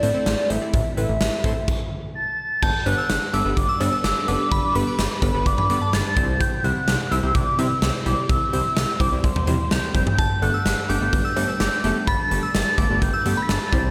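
A big arena sound with a lush hall reverb frames this nostalgic, wistful synth-pop excerpt in G major at 127 BPM, where a hollow, woody clarinet-like synth lead with vibrato and digital delay carries the melody over round analog keys and a swirling, vintage string machine with phaser in the background. A fat, saturated sawtooth bass and a huge, up-front acoustic drum kit, with a punchy kick, snare, toms, hi-hat, crash and cowbell, drive the 4/4 groove, which halts for a stop at 1.7 seconds. A glassy, crystalline FM bell with slapback echo plays a second line from 2.6 seconds and again from 10.2 seconds.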